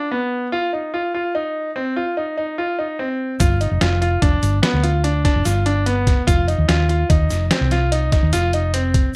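A bright concert grand piano opens alone with brilliant, up-front arpeggios between B3 and F4, colored by slapback echo and plate reverb over Bm and F5 chords. At 3.4 seconds the band enters in a tense, intricate 7/4 at 146 BPM with a straight feel. A dark, round hollow-body fingered bass sits up front between F1 and Eb2, alongside a gritty trip hop sampler-style kit that sounds compressed and pitched down, with a thumpy kick, medium-tuned snare and hi-hat re-recorded in a large room. A grainy tube shaker rustles in the background until 8.5 seconds as the harmony moves from G7 back to F5. Light reverb frames this short progressive instrumental excerpt, which is cut from a longer piece and ends shortly after 9 seconds.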